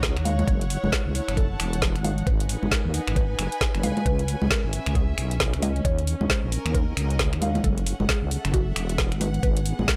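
UK garage in a skippy two-step groove, this soulful excerpt moves through minor seventh chords over a knocking electronic kick and an up-front garage kit of woody snare, metallic hats, congas and finger snaps, all re-recorded in a small room. A deep, dark wobble bass, fattened with chorus and tube saturation, sits forward beneath a rich, intimate string section bowing with light vibrato and pumping against the sidechain. From 0.3 seconds, a round, mellow mallet-like synth pluck plays the melody in the background through a phaser, subtle chorus and dub echo, all in light reverb.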